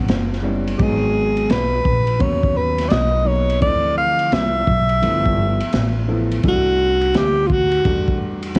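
Heard through home cassette tape with vinyl crackle and light reverb, this cool, mellow jazz-hop fragment of a longer hip hop piece moves at 85 BPM in 4/4 with a swung 16th-note feel. A warm, vintage upright piano, its cassette-tape tone carrying long sustain, moves through A13, Abm9, Dm9, G13 and C69. Beneath it sit a woody, thumpy pizzicato upright bass on gut strings and a crunchy, gritty breakbeat kit with dark cymbals and a tight kick, and from 0.8 seconds a breathy alto saxophone takes the up-front solo melody with subtone, light vibrato, scooped notes and analog delay until 8.2 seconds.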